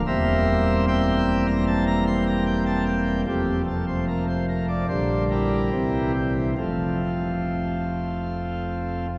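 A pipe organ's full principal chorus, up front with a baroque voicing, plays alone across a range from E1 to C6 in this majestic, reverent chorale-style classical excerpt in F major, moving in a rubato 4/4 at roughly 70-76 BPM through C7/E, F, Gm/Bb and C7 before settling on F at 6.6 seconds, all bathed in a cathedral reverb with a 5.3-second decay.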